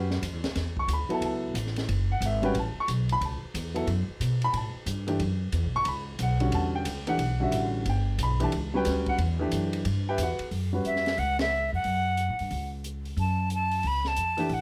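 Modal jazz in F# phrygian, this short excerpt from a longer piece moves at a brisk 181 BPM with a swung feel, its mood intense yet cool. A baby grand piano accompanies from the start, warm, natural and up front, moving from F#m7 to Emadd9 at 5.2 seconds, while a pizzicato upright bass with steel strings sounds woody and growly beneath it. An open jazz drum kit, set lower in the mix, brings hi-hat, ride, snare and kick from a small room, with dark cymbals, a high-tuned snare and a boomy kick. At 10.5 seconds a new section begins over F#m, and at 10.9 seconds a breathy, bright concert flute takes the melody, tongued and straight-toned, a touch unsteady, sitting up front in plate reverb. The piano drops out at 11.2 seconds, just before a band accent at 11.3, leaving flute, bass and drums to carry the close under a light overall reverb, apart from a brief piano touch at 14.4 seconds.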